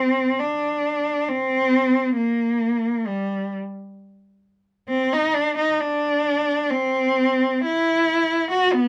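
A single bowed cello opens this brief, lonely and yearning classical fragment, playing a free, expressive line in 3/4 at a rubato 62-70 BPM, its warm tone colored by vibrato and portamento as it moves between G3 and F#4, sitting up front in a close, detailed recording with little reverb.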